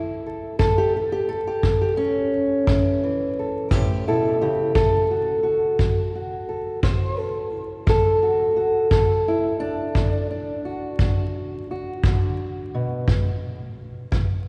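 A fingerpicked old ladder-braced acoustic guitar opens this gritty, rollicking excerpt of acoustic country blues, its dark, woody, boxy tone and old strings carrying the melody up front, moving from A to D and settling on A5 near 13.1 seconds. A punchy kick drum with a rolled-off top joins at 0.6 seconds, keeping a slow 12/8 pulse at 58 BPM in dotted quarters. A long, wet church reverb and a layer of vinyl crackle wrap the duo in a cavernous, aged sound.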